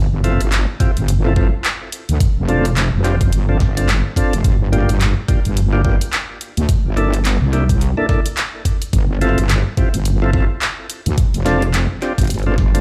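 Glitch hop at 107 BPM with a swung sixteenth-note feel, funky and swaggering, in this short cut from a longer piece that moves through jazzy seventh chords like Fmaj7/G, Dm7 and C13/G. A heavy, detuned sawtooth wobble bass with chorus and overdrive sits up front from the start, joined at 0.2 seconds by smooth tonewheel organ stabs with key click, slow rotary speaker, 12-bit sampler grit, sidechain pumping and delay, plus an overdriven drum kit of cracking snare, bright hats and handclaps. A knocking, overdriven electronic kick enters at 0.8 seconds, the whole mix carrying the character of a big sound system in a bare room.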